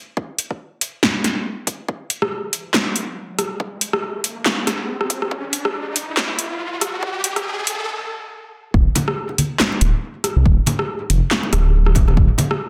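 Dark and meditative, this deep dubstep cut moves with a swung, half-time feel, taken from a longer piece. An overdriven electronic kick with a deep, layered body sits up front alongside a deep house kit of handclaps, rim clicks, metallic hats and a punchy snare, both re-recorded in a large room. An electronic riser builds from 2.9 to 7.9 seconds, then a brief stop leaves space before the drop lands at 8.7 seconds. There a rumbling, detuned sawtooth bass in unison arrives up front, its beating, saturated tone spanning D1 to C2 with a fast attack and long sustain. Hard-hand congas and bongos follow at 9.0 seconds, compressed and trailed by dub echo, all set in light reverb within a dense, heavily limited master.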